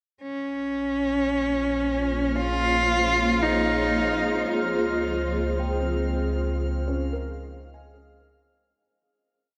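A clear, biting bowed cello with vibrato sings an arching motif up front through tape echo from 0.2 s to 4.5 s in this melancholic, spacious ambient piece at 56 BPM in Bb dorian, over a round sine sub bass holding the roots, a blurred granular cloud pad on slowly shifting Bbm7 and Dbmaj7 chords, and a glassy held high note drifting in the background. After the cello falls silent, a soft, felt-muted upright piano with audible action noise enters at 5.6 s, playing arpeggio loops under lush chorus, the dreamy mix soaked in huge reverb and cassette haze.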